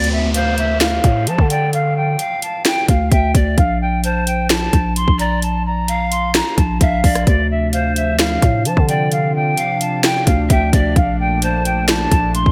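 A half-time trap groove at 130 BPM drives this eerie, dark hip hop excerpt in D minor, its hard-clipped kick, sharp snare, rim click and metallic hats sitting up front in gated reverb beside a growling, buzzy 808-style bass, while a downlifter sweeps through the opening until 3.6 seconds. An airy silver concert flute carries the melody through a low-pass filter, joined from 0.3 seconds by breathy, reedy pan pipes with vibrato and chiff, echoing through digital delay on a second line. At 7.3 seconds a smooth, detuned analog pad with chorus adds sustained chords over the Dm to Bb movement, all set in light digital ambience with a bright 1980s-style digital sheen.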